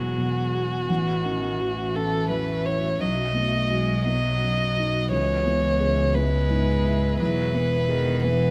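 Neoclassical piano and strings in C# minor, this melancholic, fragile fragment moves at a rubato 57 BPM in 6/8, drifting through Eadd9, A6, B and C#m7 before returning to Eadd9. A single up-front violin carries the melody with an airy sul tasto bow and light vibrato, while a pure, floating cello traces a second line in the background and a woody bowed double bass anchors the low end. A felt-muted upright piano, boxy and intimate with audible action noise, supplies the accompaniment, and an ethereal pad with chorus and tremolo sustains chords beneath it all in light reverb.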